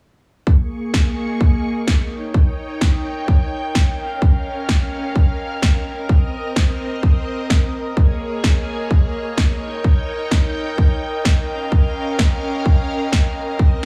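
Soulful, energetic piano house at 128 BPM with a swung sixteenth feel, where a punchy, layered electronic kick sits up front from 0.5 seconds, an overdriven analog snare joins at 0.9 seconds, and a shimmering vintage string machine with ensemble chorus, a filter sweep and sidechain pumping holds sustained chords over Bbm7, Eb7, Db6 and Cm7, alongside a breathy, detuned pad that also pumps beneath light small-room reverb in this cut from a longer piece.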